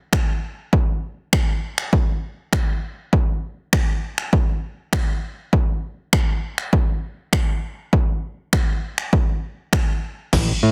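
Confident and driving, this dance-pop excerpt moves in a straight 4/4 groove cut from a longer piece. A punchy analog drum machine carries nearly the whole passage from 0.1 s, its kick and snare hitting hard alongside finger snaps and a crash cymbal, with overdrive giving the kit grit and soft clipping roughening the snare. The drums sit up front, yet carry the air of a large room. Near the close, a drum fill arrives at 10.3 s, and a fat analog bass joins only for that brief moment, a thick, detuned sawtooth and square-wave tone with a saturated filter pluck, fast attack and sidechain pumping. The mix is dense and heavily limited in a modern way, with little reverb.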